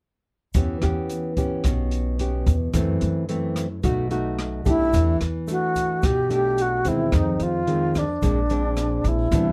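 A straight 4/4 bossa nova groove at 110 BPM in E dorian, carried by a pizzicato upright bass with a woody tone, an open jazz kit of hi-hat, rim click and a boomy kick, and a grainy egg shaker tucked in the background. Up front, a thumb-plucked nylon-string guitar comps through chords such as Em6, B7 and Em11, its classical sound flecked with finger squeak. At 4.7 seconds a reedy alto flute enters with an airy, vibrato-tinged melody, giving this dry, dark, intimate fragment a smooth, warm glow.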